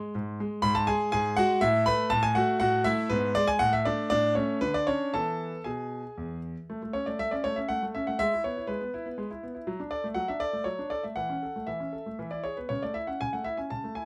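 Cheerful and elegant, this classical-period piano sonatina moves at 120 BPM in 3/4 with a straight feel in A major, tuned to A4 = 443 Hz, cut from a longer piece. A clear grand piano plays solo from E2 to B5, sitting up front with an intimate, natural tone and audible action noise, captured by close, detailed microphones in a small room with moderate reverb. The first section runs to 6.7 seconds, touching G#m7, F#m9/A and G#dim before settling on E, and the second section until 14.1 seconds moves through A, E/G#, D/F# and A/E, closing on E and A/C#.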